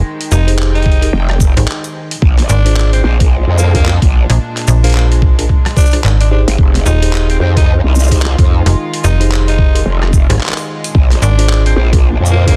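Glitch hop with a funky, swaggering swing, this excerpt opens on a snappy, metallic FM slap bass and a dark, reedy chamber string section pumping in the background, with a gritty, pitched-down boom bap kit of handclaps, hi-hat, rim click and shaker soon joining. A breathy, raspy tenor saxophone with vibrato and tape echo carries the solo melody over bell-like electric piano stabs, while a thumpy, compressed electronic kick arrives at 0.9 s and a growling, wobbling bass with chorus enters at 1.1 s, sitting up front. The harmony shifts between Fm7 and Bb7 in a digital ambience, and the master is dense and heavily limited.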